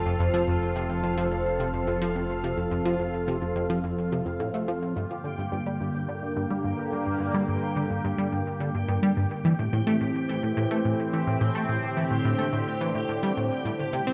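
A sweeping, bright resonant pad holds sustained chords over a fat, saturated analog bass that drops out after 4.9 seconds, while a bubbling, mellow stepped-filter texture and a tight, driving sequenced synth riff with chorus, phaser and delay carry this expansive, hypnotic ambient space-music excerpt in G dorian at 107 BPM through chords of F, Gm and Am in a wet concert-hall reverb, before a round, dark octave-layered lead touches a single high note at 13.9 seconds.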